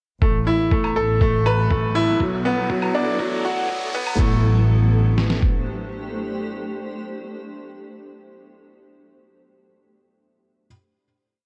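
Piano and strings electronica at 121 BPM in A dorian, this short piece feels cinematic and hypnotic, moving from a build into a held final chord at 4.2 seconds. A brilliant grand piano sits up front with tape echo, playing an eight-step arpeggiated riff with short sustain that carries on to 10.7 seconds. Beneath it, a chamber double bass section draws long, bowed, gliding notes with vibrato and sidechain pumping, while a muffled, compressed sampler-style kit thumps a four-on-the-floor kick with a medium-tuned snare. A tape-tinged woodblock keeps a restrained pulse in the background, and an electronic riser climbs under a filter sweep toward the arrival on A minor. From 2.1 seconds a cloudy granular pad with a slow attack and its own reverb drifts through slowly shifting chords, pumping with the sidechain, all within a dark production with light digital ambience.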